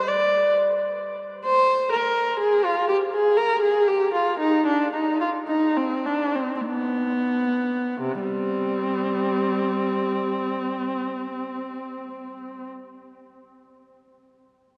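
A baroque-style classical suite movement for unaccompanied viola in C minor and 3/4, this grave yet flowing fragment moves with a free rubato between 42 and 67 BPM, slowing through its first 8.0 seconds before a new section begins. The single bowed viola sits up front across a range from C3 to D5, its warm tone carrying expressive vibrato, portamento and a smooth top. A cathedral-like reverb with a 5.5-second decay surrounds the instrument in a resonant church or concert hall space, and the sound extends only up to 10.4 kHz.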